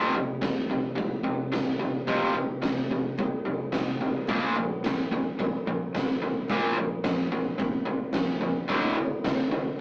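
A raw, overdriven electric guitar leads this short garage rock cut, its bright, picked riff double-tracked and pushed up front as it moves from F5 to Bb5 and on to D5 at 8.7 seconds. An oversized, low-tuned acoustic drum kit joins at 0.2 seconds with a fat snare, punchy kick and toms, its dark, gritty, saturated tone sitting in a bright stone room. The mood is swaggering and menacing, played in a straight 4/4 feel across a single section that runs to 9.8 seconds. A moderate reverb surrounds the pair, and the whole take has the rough character of a rehearsal-room recording, colored by tube saturation, cassette tape and a small-speaker sound. It plays as a fragment lifted from a longer piece.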